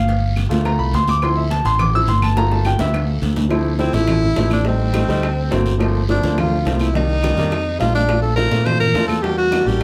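Sultry and driving, this Afro-Cuban jazz excerpt opens with a warm, polished grand piano solo over a bright, punchy fingered electric bass, backed by high-tuned congas, round low-tuned cowbell and bongos, raspy guiro and woody claves, until a clear tenor saxophone with vibrato takes the lead at 3.8 seconds, all set in a small room heard from further back.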